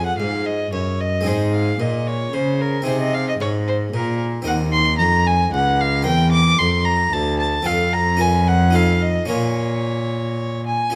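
Classical baroque-style sonata movement with continuo, introspective and flowing at 112 BPM in a straight 3/4, settling into Bb minor from 4.5 s and closing on a Bb minor chord. A single bowed violin carries the melody up front with a rich, reedy gut-string tone and light vibrato, while a period-style bowed cello holds the bass close beside it until 10.7 s. A dry, round Flemish-style harpsichord, close-miked and plucked on one set of strings, fills in the accompaniment under light reverb in this short cut from a longer piece.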